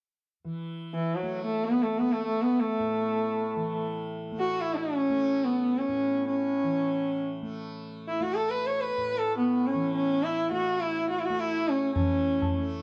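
Unfolding in free time, this meditative, serene excerpt of Hindustani classical music in raga bhupali on A sets a bowed sarangi, biting and gliding with light vibrato and sympathetic strings, up front over a softly plucked, buzzing, shimmering tanpura drone, with a low-tuned, short-ringing tabla arriving only at 12.0 seconds, all captured in a dry, close 1970s-style studio sound with small room ambience.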